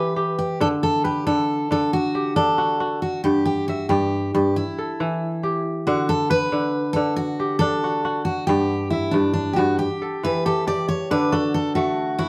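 A ringing, roomy live take with a soft wash of studio reverb carries this flowing West African string piece in a steady 12/8, where an up-front kora spins crisp, fingerpicked arpeggios across its full range while a dark, full-bodied jumbo steel-string guitar picks the melody over a gentle cycle of E minor and D chords, the fragment moving into a new section at 11.1 seconds before it cuts off.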